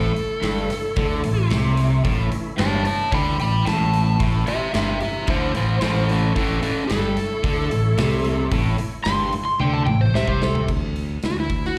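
A dark, overdriven slide guitar sits up front with slapback echo, carrying a solo through this gritty, driving blues rock and southern rock fragment of a longer live performance, heard through a club PA with small-room reverb. Beneath it, a crunchy, double-tracked electric guitar picks a low riff with its own slapback echo, a growling fingered bass adds punchy overdrive, and a thick, percussive tonewheel organ holds sustained chords in the background through a slow rotary speaker and chorus vibrato. A big, airy rock kit with a punchy kick enters at 0.2 s and plays a fill from 9.6 s. The organ drops out at 10.6 s, and at 10.7 s the harmony shifts from A to D5 as the rhythm guitar falls away.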